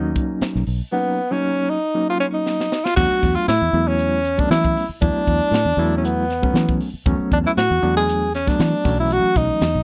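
A dry, close 1970s-style studio sound frames this slick, bright electric jazz fusion excerpt in 4/4 with a light sixteenth-note swing. A gritty, overdriven reed electric piano with fast tremolo opens on a rootless Bmaj9 voicing beside a round, foam-muted fingered bass and a crisp fusion drum kit with a punchy kick, high-tuned snare and dark cymbals, which plays a fill at 2.5 s before the harmony moves to E9sus4 at 3.0 s. Up front, the tenor saxophone enters at 0.9 s with a warm jazz tone, light vibrato and scooped notes, touched by slapback echo.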